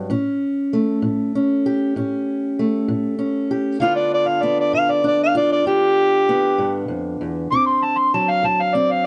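Soulful and laid-back, this acoustic country blues excerpt moves at a relaxed 65 BPM in 12/8, with a boxy, parlour-style fingerpicked steel-string acoustic guitar accompanying from the start before a gritty, amplified, overdriven harmonica enters up front at 3.8 seconds to solo in a jazz style full of tongue slaps and scooped notes over A7, G7 and D7 chords, all captured with close, detailed microphones and light reverb.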